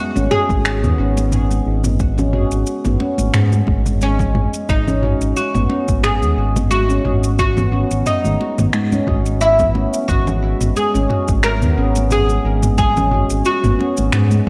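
A plectrum-plucked oud carries the melody up front, its woody, double-strung tone touched by tape echo as it moves between C#4 and A#4. This organic downtempo piece in G# minor has an earthy, mystical mood, moving at 89 BPM in 4/4 with a light 16th-note swing over a single G#7(no3) chord. A ringing stainless-steel handpan plays soft-fingered, meditative arpeggios with delay from the first moment, while a smooth sawtooth-and-triangle synth bass with ring modulation and vibrato sits up front from 0.2 seconds, sustained and mellow. Beneath them, a tape-warm deep house kit of finger snaps, shaker and toms joins bright, close congas struck with hard hands, and a deep, layered electronic kick enters at 0.5 seconds in the background. The whole recording has a light small-room reverb and a worn cassette character with warbly pitch drift, and this 14.5-second section is cut from a longer piece.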